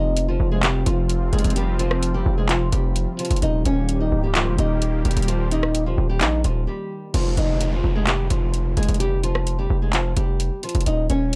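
Eerie and menacing, this half-time trap cut at 129 BPM sets a small, dark, fingerpicked nylon-string guitar melody over an airy, detuned sawtooth pad with a slow attack, filter swell and chorus, moving from Fm to Eb. Beneath them a heavy, aggressive 808-style bass sits up front with saturated distortion, while an electronic trap kit with metallic hats, handclaps, rim clicks and crash enters at 0.2 seconds. After a brief break, the pad drops out at 7.1 seconds and a background downlifter sinks under the bass, guitar and drums in a dry, cassette-saturated sound.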